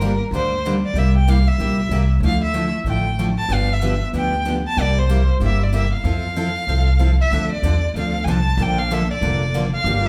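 A rich bowed violin, full of vibrato and portamento, leads this playful, lively acoustic string swing (jazz manouche) fragment up front, over two picked steel-string acoustic guitars (a bright jumbo and a full-bodied dreadnought further back, both with audible finger squeak) and a woody, thumpy pizzicato upright bass on gut strings, all captured live in one room with a lush studio reverb as the chords move from Gm through C7 to Fmaj7 before a new section begins at 7.3 seconds.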